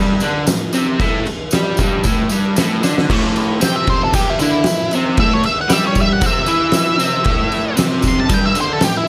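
Garage rock with a rowdy, swaggering attitude, this brief cut from a longer piece opens on a crunchy, double-tracked overdriven guitar riff over an oversized, low-tuned drum kit with a fat snare, punchy kick, crashes and a gritty, saturated tone, while a jingly tambourine sits further back. A drum fill at 2.8 seconds sets up a new section at 3.1 seconds, and an octave-fuzz lead guitar takes a distorted solo from 3.6 seconds until the end. The guitars and drums sit up front, the drums in a bright stone room, with light reverb over the mix.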